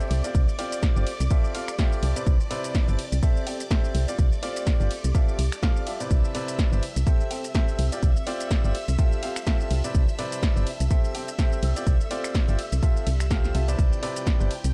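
A swung 4/4 groove at 125 BPM drives this feel-good, joyful piano house clip, cut from a longer piece in C major, with an up-front, layered electronic kick entering at 0.3 seconds. A dry analog drum machine fills in finger snaps, hi-hat, ride cymbal, shaker and a punchy snare, while a round, dark FM bass with a fast attack and transformer saturation sits solidly underneath, pumping against the kick. A clear, woody upright piano carries the riff, also sidechained, as the harmony cycles through G7sus4/C, Fmaj9, Cmaj9 and Am7/C. Behind it, a shimmering vintage string machine holds bright sawtooth violin chords with ensemble chorus and the same pumping motion, and a very quiet granular cloud pad adds a blurred, evolving haze. The whole track has a gritty hardware character set in digital ambience.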